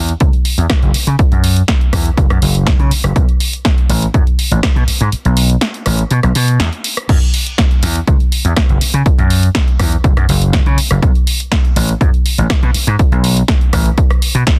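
Funky and groovy, this short cut from a longer filtered disco house track rides a straight 4/4 feel. A vintage slap bass sits up front, electric and amped, spanning F#1 to C#3 through tube saturation, sidechain pumping and a low-pass filter, with a filter sweep running across the whole passage. An electronic kick drum, punchy and tape-warm, stands close beside it and drops out between 5.1 and 7.1 seconds. A layered, produced house drum kit adds crash cymbal, hi-hat, rim click and snare, its hats and cymbals breathing with sidechain pumping. The room is dry, and the mix is dense and heavily limited in a modern way.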